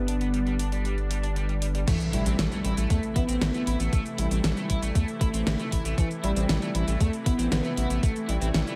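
The recording sits in a digital ambience, with a round, deep analog bass placed up front and tube saturation adding grit to its dark, sustained tone. This synthwave excerpt at 117 BPM in A minor feels driving and cinematic, moving from a G chord to A minor at 1.9 seconds. A velvety sawtooth lead carries the melody with chorus, delay, vibrato and portamento, while a lush, detuned unison pad holds sustained chords under chorus and sidechain pumping. An overdriven, double-tracked semi-hollow guitar plays a picked riff through analog chorus, a low-pass filter and delay. A pop drum kit with a fat snare, hi-hat, shaker and crash cymbal rides on gated reverb, and a thumpy, overdriven electronic kick drum joins at 1.9 seconds alongside a very quiet electronic impact that lasts until 3.9 seconds.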